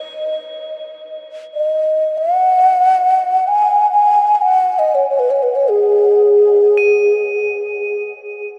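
Spacious and haunting, this brief passage of meditative world music drifts in free time through a huge, dark reverberant space. A low bamboo xiao carries the melody up front, its hollow, airy tone shaped by a soft attack, gentle vibrato and tape echo, until it falls silent at 8.0 seconds. High above it, crotales struck with plastic mallets add a close, bell-like shimmer that keeps ringing until 8.6 seconds.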